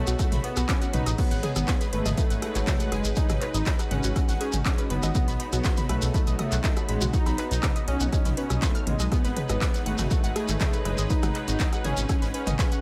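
Hypnotic and driving, this melodic techno excerpt at 121 BPM in G# phrygian rides a punchy, up-front electronic kick and a techno drum kit of smooth hats, handclaps, rim clicks, toms and crash, dotted with a grainy shekere and a very quiet acoustic jazz kit with a high-tuned snare, while a rumbling, saturated detuned saw bass anchors the B to G#m7 changes, a thick, wave-folded unison lead sings with vibrato through diffuse delay, a lush unison pluck spins delayed arpeggios, and biting, distant strings and a deep, moody pad sustain in the background, the synths, strings and techno kit all pulsing under sidechain pumping.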